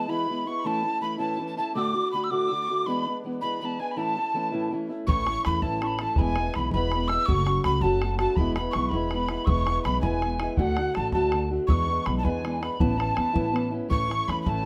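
A bright, lively Celtic folk jig in 6/8 at 109 BPM and in A major opens with a breathy metal whistle carrying the melody, tongued and expressive with chiff and vibrato in a plate reverb, while a mellow, airy tin whistle with a crisp attack and rolled-off highs traces an unsteady second line in the background over boxy, fingerpicked archtop guitar with audible finger squeak. At 5.1 s a woody, thumpy pizzicato upright bass on gut strings and an open, boomy bodhran, close and dry, join in. The piece sits in a moderate studio room, with the guitar and bass up front.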